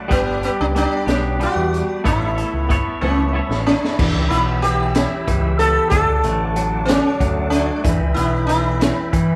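Psychedelic rock with a hypnotic, mysterious mood, moving at a slow 62 BPM in 6/8 in E dorian, with a buzzing, shimmering sitar melody up front over a growling overdriven picked bass and a crunchy, gritty breakbeat kit with dark cymbals, a high-tuned snare and a punchy kick. A twangy, clean electric guitar riff with tremolo and background tonewheel organ chords through a slow rotary speaker with chorus vibrato and key click fill out the sound, all in a large studio reverb that sounds like a band playing live in one room. The harmony moves from G to Aadd9, and a drum fill from 3.0 to 4.0 seconds leads into a shift to Em at 4.0 seconds, then on to D and back to Em. The clip is cut from a longer piece.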